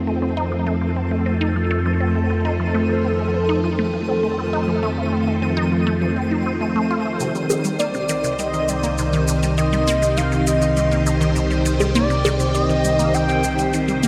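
Heard from the start in an expansive, mysterious stretch of ambient sequencer-driven space music at 101 BPM in C dorian, a bright, swirling string machine holds chorused, phased chords over a mellow, nasal analog drone, while a squelchy, resonant blip pluck repeats its phased, delayed riff and a detuned, pulsing gated texture sits in the background, before electronic shaker and bongos arrive at 7.2 seconds, as the harmony moves from F to Cmadd9, and a shimmering pulse-width lead with vibrato sings a short delayed melody from 7.8 seconds, all bathed in a lush hall reverb.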